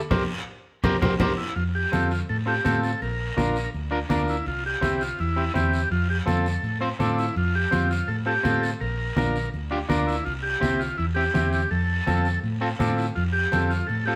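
A wet stone-room reverb wraps this festive, danceable cumbia excerpt, played live by a band in one room at 166 BPM in F major. A band accent and a drum fill open it before the chords settle into F, Bb and C. A clean, fingered electric guitar and a dark, round hollow-body bass sit up front, while low-tuned, thick-skinned congas stay in the background and a raspy, saturated guiro scrapes along quietly. A vintage, buzzy combo organ with light vibrato carries the melody from 1.2 seconds.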